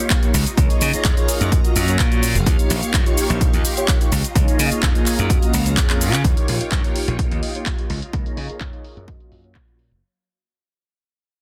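A punchy, tape-warm electronic kick sits up front in this sunny, feel-good filtered disco house excerpt at 127 BPM in Eb mixolydian, joined by a house kit of handclaps, hi-hat and shaker with sidechain pumping and a low-pass filter on the hats and percussion. A bright, glassy slap bass pumps beneath a round, detuned sawtooth synth brass with chorus and vibrato, while a swirling vintage string machine holds phased sustained chords in the background over a Db6/9, Gbmaj7 and Eb9 progression. After a drum fill at 5.9 seconds, a filter sweep and fade-out run from 6.2 seconds, all in a dry, dense, heavily limited modern mix.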